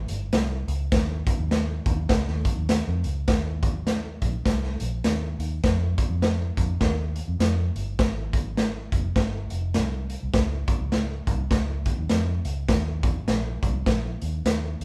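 Light reverb and a live, one-room feel give this short cut from a longer piece a close, lived-in sound, with the drums sitting up front. It is uptempo 1960s-style soul in 4/4 with a swung eighth-note feel, and the mood is warm and joyful. A raw garage drum kit enters at 0.1 seconds, its kick punchy, its snare medium-tuned, and its hi-hat riding along, all colored by a saturated, gritty tone, a pumping small room and a rolled-off top. Underneath, a vintage muted electric bass played with the fingers sits low and round, its amped, foam-muted tone dark, running from the opening through to 14.8 seconds. After a brief opening passage, the groove settles into a longer second section at 3.3 seconds that carries on to the end.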